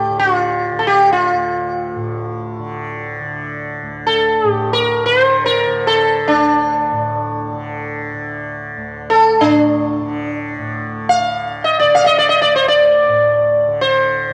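A plectrum-plucked sitar sits up front and carries the melody, its round, buzzing tone shimmering with sympathetic strings as it moves between D4 and F5. Beneath it, a softly plucked tanpura holds a low drone between D2 and D3, much quieter and with its own buzzing, shimmering resonance. This is Hindustani classical music in a solemn, introspective mood, heard as a short passage cut from a longer performance, with both instruments sounding together from start to finish across its 14.3 seconds. A moderate, lush hall reverb gives the pair a spacious glow. The home cassette recording adds tape character to both the sitar and the tanpura, lending the performance a homemade quality.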